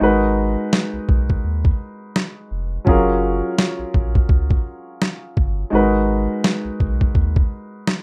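Soulful boom-bap hip-hop at 84 BPM with a swung 16th feel, where a woody upright piano, filtered at both ends and up front, plays G#m7 to F#maj7 chords over a deep, round sine sub bass, while a gritty, pitched-down sampler-style kit with a thumpy kick and medium-tuned snare enters at 0.7 seconds, all in a rough home-demo mix with light reverb, cut from a longer piece.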